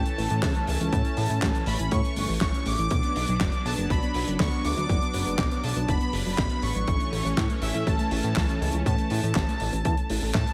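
Melodramatic and danceable, this italo disco passage from a longer piece moves in a straight four between A and B minor, with a bold, brassy analog synth lead carrying the melody through chorus, gritty 12-bit sampler character and tape echo over a smooth, detuned pad of sustained chords. A dark, full-bodied pluck ripples arpeggios in the background with its own chorus and tape echo, while a glossy, up-front chorused synth bass anchors the low end. A dry, damped 70s kit with a fat snare, hi-hat and handclaps sits in gated reverb, and a punchy, overdriven electronic kick joins at 0.4 s.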